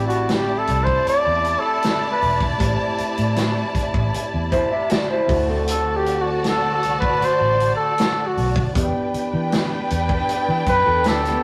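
A rough rehearsal-room recording in a stone room carries this smooth, silky slice of lush 1970s-style soul, where an up-front, warm flugelhorn solos with light vibrato over a distant, dark violin section, a mellow tine electric piano heard through its built-in speakers, a round, foam-muted electric bass and a punchy vintage drum kit with a rolled-off top, while a slightly broken-up, lo-fi electric guitar with tremolo joins at 4.5 seconds with a riff as the chords move from Am11 to D7 to Em7.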